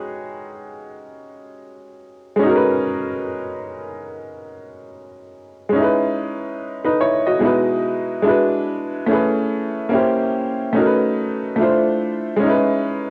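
A home recording on cassette with light reverb frames this excerpt. It is a reflective, melancholic hip hop piece at 72 BPM in 4/4, with a 62% swing on the sixteenths and a home key of C# minor. A woody upright piano with short sustain plays alone and sits up front, its tone softened by cassette tape and a low-pass filter. It opens on a suspended G#7sus4 harmony until 5.7 seconds. From there it moves through a richer run of chords: C#m9, Emaj7/B, E7, Amaj9, A#dim7, B7 and Dm9, before it settles back on C#m9 as the clip ends at 13.1 seconds.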